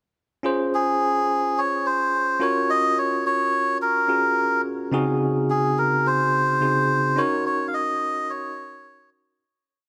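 A moderate, lush hall reverb surrounds this short, uplifting pop piece, lending it a nostalgic glow. A bell-like tine electric piano sets the bed from 0.4 seconds, its bright, clean tone sitting up front as it holds closely voiced chords. A reedy, breathy melodica joins almost at once to carry the melody, its nasal, wooden-cased voice also placed close to the listener. The melodica shapes its line from short motifs built as call phrases, while the piano's held chords sit gently beneath over a steady, straight pulse. The whole thing is a single verse, and it begins to fade out at 7.2 seconds before closing at 9.4 seconds.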